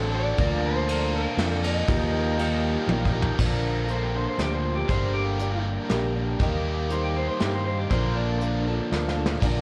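A slightly broken-up electric guitar through a small old amp carries the melody until 8.6 seconds, and a clean electric guitar solo joins from 3.4 seconds in this wistful, dusty folk rock and heartland rock fragment at 119 BPM in 3/4. Beneath it, a biting, double-tracked overdriven guitar plays a riff with spring reverb, a plugged-in steel-string acoustic guitar with fresh strings is picked in the background, and a round fingered electric bass sits up front. A very quiet tonewheel organ with key click and slow rotary speaker holds chords beside a mellow, woody upright piano that adds a short fill. Soft brushes on a small-room kit with dark cymbals and a punchy kick enter at 0.4 seconds, while the chords move from Bbmaj7/D and Ebadd9 through Gm and Eb, and the mix carries worn, warbling cassette tape and light reverb.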